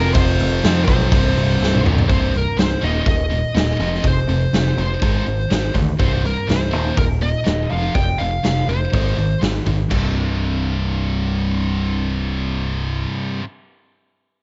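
Recorded at home on cassette in a small room, this menacing, heavy hard rock passage in C minor has a dull, capped top end, running at 123 BPM in a straight 4/4 as power chords move through F5, C5, Eb5 and Ab. An up-front, big-room acoustic kit with a boomy kick and medium-tuned snare drives it, firing a fill at 1.6 seconds before dropping out at 10.0 seconds, while a bright, overdriven picked bass growls beneath chunky riffs from a scooped high-gain guitar and a warmer, hollow-bodied overdriven guitar set back in the mix. A bright, distorted lead guitar carries a high melody over the top until 9.4 seconds, leaving the riffing guitars and bass to carry this fragment of a longer piece to its close.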